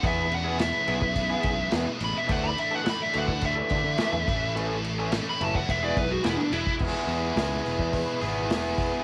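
An upbeat, carefree indie rock excerpt at 106 BPM in a straight 4/4, cut from a longer piece and captured as a home recording on cassette with light reverb. A smooth, dark overdriven lead guitar carries a picked solo melody from the start until 6.8 seconds, moving over chords of E6, Dsus2, A and E. Beneath it, a raw, lo-fi garage guitar sits up front with its overdriven, bright riff, while a scooped high-gain guitar adds a distorted riff coloured by ensemble chorus and analog delay. A round, punchy overdriven bass plays picked lines, and an acoustic kit heard in a studio room, played with bundle sticks, offers a punchy kick, medium-tuned snare, hi-hat and dark crash and ride cymbals. Very quiet in the background, a vintage string machine holds shimmering sawtooth violin chords with a slow attack and a moving notch, continuing after the solo ends into the closing stretch to 9.0 seconds.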